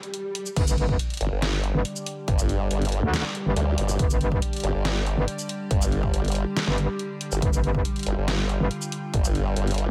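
A half-time 4/4 groove at 140 BPM drives this aggressive, menacing heavy wobble dubstep, which opens on a brief electronic swell before a punchy, layered electronic kick and a saturated, metallic FM wobble bass land at 0.6 s, joined at 1.2 s by a detuned sawtooth wobble bass shaped by a formant filter. Both basses sit up front with chorus and overdrive, while the dubstep drum kit adds a deep snare, crash cymbal, hi-hat and shaker re-recorded in a large room. From 1.1 s an evolving, morphing wavetable pad sustains bright chords with built-in reverb and sidechain pumping, though the overall mix stays dry.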